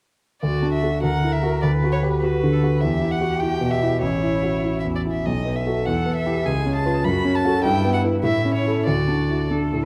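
Up front in the mix, a concert grand piano carries the accompaniment with a natural tone and deep bass, ranging from A1 to B4 and sounding from 0.4 to 9.9 seconds. This quick, graceful and lively classical-period movement for piano quartet moves at 100 BPM in 2/4 in D major, with uneven beats and a rubato feel. A single bowed violin sings the melody between B4 and B5, its close, smooth sound touched with vibrato and held even until it stops at 9.5 seconds. Beneath it, one cellist plays a second line from E4 to B4, heard at a greater distance, with a rich, focused bowed tone and vibrato. The harmony travels from D through F#7/D, Bm/D and Em to A, then turns through B7, C#7 and F#m before settling back on D. A recital hall reverb lends a wet, dark character to this brief passage cut from a longer piece.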